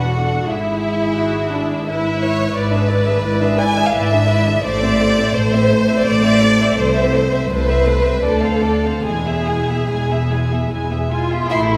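A violin section carrying a second line sits up front, bowed sul tasto with vibrato and a soft, intimate attack, while a higher violin section sings the melody above it with light vibrato and a smooth top. This is a melancholic, elegiac slow romantic movement for string orchestra in triple time, shaped with a flexible rubato feel, and the fragment is cut from a longer piece. A viola section fills the middle with gentle, close accompaniment. Beneath them, dark, woody cellos and an intimate double bass section anchor the low end, all bowed over the fingerboard for a veiled chamber tone. The harmony drifts through mournful minor colours before settling on an E chord at 9.1 s, and all five sections sound together from the start until the close near 11.8 s. A wet hall reverb with a 1.7 s decay surrounds the ensemble with a soft, glowing halo.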